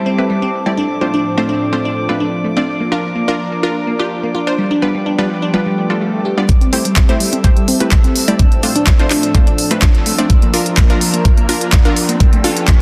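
A straight 4/4 progressive house pulse at 126 BPM in A minor arrives at 6.5 seconds with a knocking, up-front electronic kick and a pop drum kit of handclaps and crisp hats, just after a very quiet swell and riser enters at 5.8 seconds to launch the build-up. Throughout, a thick, warbling sawtooth pad holds sustained Am7, Dm7/A, Bb and G7 chords, a crystalline wavetable pluck spins arpeggios through tape echo and a filter sweep, punchy detuned unison stabs cut in, and a calm glass-harmonics texture of drifting overtones sits in the background, with the pad, plucks and texture all pumping with sidechain compression. The mood is emotional and dreamy, set in a moderate hall reverb with a dense, heavily limited modern master.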